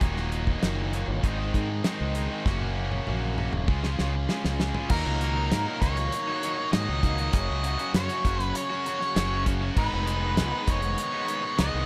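Gritty and driving, this classic rock excerpt at 99 BPM in straight 4/4 opens with two bright, picked electric guitars riffing, one crunchy and overdriven and one tight and distorted, over an up-front fingered electric bass and a dry, damped 70s drum kit with a fat snare and tight kick, whose fill from 2.5 s leads into the Eb minor passage at 4.9 s, where a dark octave-fuzz lead guitar takes the melody and a very quiet, thick overdriven tonewheel organ with key click and rotary speaker sustains chords beneath, set in a light studio reverb.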